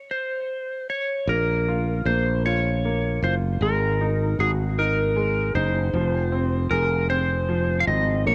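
A clean lap steel guitar carries the melody up front, its dark electric tone shaped by fingerpicks, slide and volume swells, and colored by cassette tape and plate reverb. It plays alone for the first 1.3 seconds over an open, unharmonized stop before the band enters. A growly fretless electric bass then sits bright and direct at the front of the mix, while a woody upright piano adds clear, short-sustaining accompaniment under its own plate reverb. This dramatic, aching pop fragment moves slowly at 52 BPM in a straight 6/8, set in B-flat minor with tuning at A4 = 439 Hz. The chords pass from Bbm to Ab5 to Fm, and the whole piece has the light-reverb intimacy of a home recording on cassette, cut from a longer piece.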